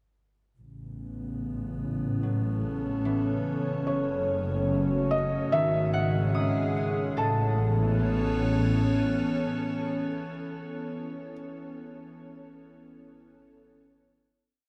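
Drenched in a huge reverb that places everything in a vast, echoing space over a faint mains hum, this peaceful, luminous ambient piece in A lydian drifts at 73 BPM. A bright, detuned wavetable pad with chorus and its own reverb morphs through slowly shifting chords under a filter sweep, while a dark, bowed double bass section holds expressive, vibrato-rich root notes up front until 9.6 seconds. A ringing, fingerpicked concert harp fades in with tape echo, its arpeggio loops of unequal length drifting against each other, and from 3.9 seconds a soft, intimate felt-muted upright piano, also with tape echo, offers mellow call-like motifs before the music settles on a final Aadd9 chord at 7.2 seconds.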